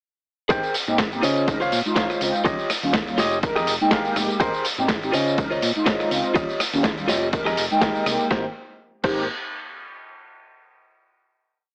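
A dry, gritty AM-radio sound with light reverb frames this sunny, joyful filtered disco house piece at 123 BPM in Ab major, where an overdriven, punchy electronic kick holds a four-on-the-floor pulse beneath a dusty, compressed sampler-style kit of programmed hats, snare backbeat, rim, tambourine, ride and crash, while a funky syncopated fingered electric bass with tube saturation, twangy picked funk chords from a bright, clean direct guitar up front, and round, detuned synth brass playing dotted-rhythm chords through chorus and phaser all pump to the sidechain along with the kit's hats, cymbals and percussion from 0.5 seconds before the music settles on a final Abmaj9 chord at 8.3 seconds.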